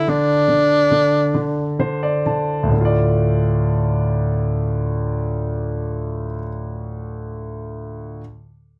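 In a slow, straight 6/8 at 40-50 BPM that slows down over its first 2.7 seconds, this dramatic, aching pop excerpt in D minor opens with an up-front tenor saxophone playing a warm, subtoned jazz-style solo line with vibrato until 1.8 seconds, while an up-front concert grand piano with a clear, natural tone, deep bass and long sustain accompanies throughout, adds a fill from 1.3 to 2.7 seconds and settles onto D minor, inside a dark production with a wet booth ambience.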